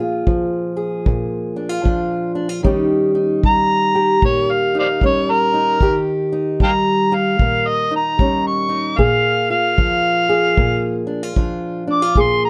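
A rollicking, soulful slice of acoustic country blues, cut from a longer piece, moves with a swung feel in four. An old ladder-braced acoustic guitar opens the recording fingerpicked and up front, its old strings giving a dark, woody, boxy tone as it carries the accompaniment over a Bb7 to Eb7 progression and back to Bb7. A small-room kick drum, tight and smooth and played with brushes, sits underneath from just after the start. At 3.5 seconds an amplified, overdriven harmonica takes the lead in a jazz-tinged solo, gritty yet warm with light vibrato, scooped notes and tongue slaps, placed up front in the mix. The close, detailed miking and light reverb keep the small group intimate and present.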